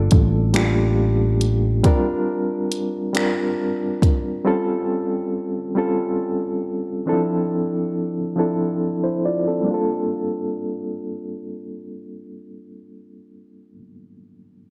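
Late-night and sultry, this slow six-eight R&B fragment in G dorian moves at 46 BPM, built around a barky, reedy electric piano accompaniment with light overdrive, medium tremolo and a low-pass filter sweep running to 9.7 seconds, carrying chords from Gm9 through C9sus4, A7alt and Dm9 before returning to Gm9. A round, punchy fingered electric bass sounds only briefly at the start, stopping at 1.8 seconds, while a soft, tape-warm electronic kit of finger snaps, hi-hat and kick plays until 4.2 seconds, leaving the piano alone thereafter. The parts sit up front in a moderate echo chamber reverb.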